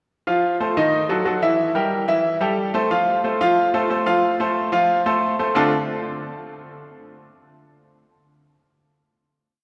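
A bright baby grand piano opens the piece alone at 0.3 seconds, playing a Latin piano montuno in octaves at a brisk 181 BPM in 4/4 with a straight feel. Set in D minor, the short, danceable and fiery phrase moves through F7, D#dim, Edim, A5 and F, spanning D3 to F5. The piano tone is brilliant and natural with long sustain, and it sits up front in the sound. A wet church reverb surrounds it, giving the resonance of a large hall or church. The playing settles onto a closing Dm7 chord at 5.5 seconds, which rings out until the piece ends at 6.9 seconds.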